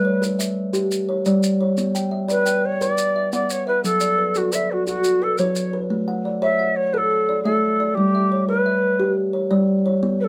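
A cedar flute and a kalimba begin together in this rippling, hypnotic excerpt of southern African traditional music, built on an interlocking mbira-style cycle in a straight 12/8 lilt. The flute carries the melody with an airy, hollow tone, a soft attack and vibrato, sounding distant in character yet sitting up front in the mix. Beneath it, the kalimba spins its arpeggios with a woody fingertip pluck, its notes ringing out from a hollow box resonance. Grainy maracas sit close and low in the mix, shaking from 0.2 s until they stop at 5.7 s, leaving flute and kalimba to carry the second section on their own. The harmony moves through G, Bm and F#m before turning to A and back to G, all framed by a modest small-room reverb that keeps the sound intimate.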